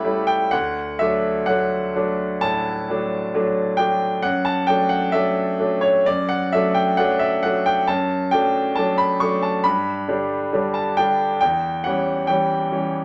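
A clear grand piano, natural and up front, carries this brief section of a romantic nocturne alone, ranging from C#2 up to C#6. The mood is dreamy and nostalgic, set in D major at a slow 66 BPM in 4/4, with rubato giving the beats an uneven, breathing feel. The harmony opens on A7 over C# before settling onto D, then moves through D over F#, reaches G at 9.7 seconds, and closes on a C# diminished chord over E. A wet small-room reverb with a short decay surrounds the instrument, keeping it intimate and close. Cut from a longer piece, the passage lasts 13 seconds.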